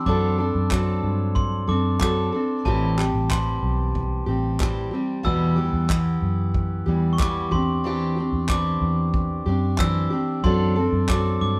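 A full-bodied jumbo acoustic guitar sits up front in this heartfelt, easy-going acoustic pop excerpt, its fresh strings picked with audible finger squeak over a relaxed, straight 92 BPM in 4/4, moving through D7/F#, Am7, Em and Cadd9/E before returning to D7/F#. A round, foam-muted vintage electric bass gives punchy low support. A distant, roomy unplugged kit of bundle sticks, tight kick and handclaps plays beneath, while a softly mixed glockenspiel adds a smooth, bell-like second line, all caught as a band playing live in one room with light reverb.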